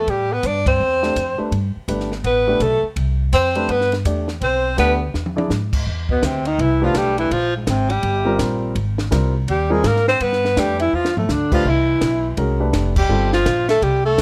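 Swinging eighths at 166 BPM in 4/4 drive this short, playful cut from a longer small-group swing and bop piece, its mood warm. A breathy alto saxophone carries the melody up front, close-miked and intimate, with a whispered subtone, soft attack, scooped notes and vibrato. Beneath it a brighter tenor saxophone traces a second line with light vibrato and its own scoops, while a woody pizzicato upright bass on steel strings sits forward in the mix. A compact cocktail kit, dark and smooth with a high-tuned snare and punchy kick, works across ride, hi-hat, crash and toms, adding fills around 5.1 and 10.9 seconds. An upright piano comps from 1.0 seconds, the band punches accents at 0.6 and 12.9 seconds, and the harmony moves through rich extended chords such as Am9, Abmaj13 and C69 under light reverb.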